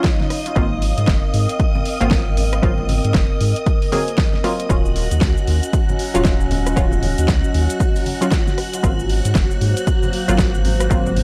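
Late-night and warm, this deep house excerpt moves at 116 BPM with a swung sixteenth feel, cycling between Ebm9 and Ab13 as a punchy, overdriven electronic kick sits up front beside a drum kit of hi-hat, rim click, shaker and fat snare. A round, dark analog bass enters at 0.6 seconds under a filtered dub chord stab that is muted yet bright, detuned and treated with phaser, cassette tape and tape echo, while low-tuned congas with a thick skin stay in the background. A warbling, nostalgic tape-like pad with chorus and built-in reverb and a silky string machine with ensemble chorus fill out the top, with sidechain pumping on the pad, stab and bass, all captured in a dry, gritty hardware recording.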